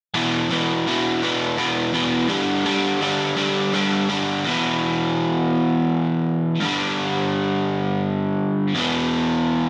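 A biting, overdriven electric guitar opens this bittersweet, restless rock piece, picked and double-tracked up front in 6/8 as it moves between E5 and G5 chords in its low register. A lush hall reverb gives it a big arena sound. A second section begins at 4.5 s and carries the same chord shift until the piece is cut off at 9.7 s.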